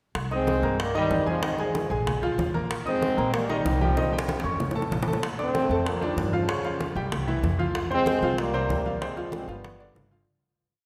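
Danceable and fiery, this short salsa piece in C minor moves at a brisk 190 BPM in a straight 4/4. A trombone section carries the hook-based melody up front, its clear, present tone shaded with vibrato and partly doubled in thirds. A smooth, vintage-sounding grand piano with short sustain plays a montuno in octaves, while a woody, thumpy upright bass on gut strings drives a pizzicato tumbao that anticipates the chords. Tight, high-tuned bongos keep steady eighths alongside a hand bell, and ringing, low-tuned congas sit in the background with slaps and open strokes. The whole band is bathed in a lush concert-hall reverb, drum fills arrive at 4.0 and 9.6 seconds, and a fade-out begins at 8.3 seconds.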